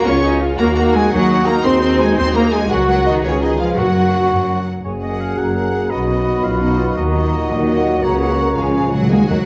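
The recording sits in a wet recital hall, where a clear, focused violin section carries the melody up close over a lush string body of background violins, smooth violas, expressive cellos and deep double basses, in a triumphant, heroic film-score cue in 6/8 at 113 BPM in F# major. Mellow French horns hold sustained chords and a tight, roomy trumpet section adds stabs, while timpani with medium mallets strike briefly near 3.8 seconds and return for a fill at 8.6 seconds. From about 4.8 seconds a clear oboe, a background clarinet and an airy, crisp flute section join with second lines, and the trombones add sustained chords beneath this short excerpt cut from a longer piece.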